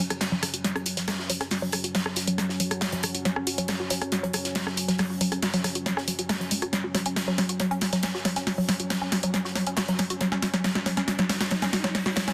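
A straight, driving 4/4 pulse at 138 BPM anchors this relentless peak-time techno excerpt, where a punchy, tape-warm analog drum machine of hi-hat, rim click and snare sits up front over a fainter gated 80s kit with bright stone-room hats and snare, while a woody, wave-folded pluck riff with chorus and tape echo rides a deep, dark detuned pad drone, a filter sweep on the synth and a drum fill push the build-up throughout, and a very quiet riser creeps in at 8.9 seconds within a dense, heavily limited master.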